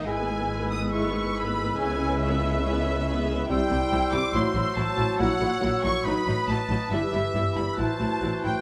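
Driving along at a fast, straight 4/4 pulse, this stormy, restless fragment of a romantic symphonic movement surges forward with dramatic urgency. A lush, bowed violin section carries the melody with vibrato, its tone rich yet slightly distant, while a second, softer violin section shadows it from the background with an expressive, gentle attack. Beneath them, an intense viola section fills out the accompaniment, and cellos and double basses anchor the bass, the basses sounding smooth and even. The woodwinds weave second lines around the strings: a bright, present solo oboe stands out, joined by a mellow clarinet, an airy flute section with crisp attacks floating high above, and a mellow bassoon adding accompaniment from below. A dark, roomy French horn section holds sustained chords in the background until about 7.9 seconds, as the harmony turns restlessly through chromatic, unsettled changes. 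Close, detailed microphones and light reverb keep the full orchestra clear throughout this brief passage cut from a longer piece.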